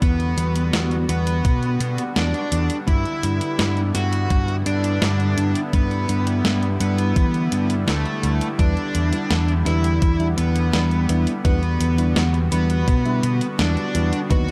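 Synthwave at 84 BPM in E minor, this short cut from a longer piece feels nostalgic and driving, moving from Em7 to G6 and back to Em7 at 8.6 seconds. A dark, smooth lead guitar carries the melody up front, its overdriven, picked tone trailed by tape echo. Beneath it, a picked electric bass sits forward with tube-saturated, amped weight, while a soft supersaw holds detuned sawtooth chords with a sub octave. The beat pairs a thumpy electronic kick with a clean 12-bit drum machine playing hi-hat and a medium-tuned snare, both sampler-style and re-recorded in a large room for a tape-warm feel. At 8.6 seconds a mellow FM electric piano adds round, full-bodied stabs with chorus from the background, and a barely audible riser surfaces at 14.3 seconds, all framed by light reverb and digital ambience in a dark production.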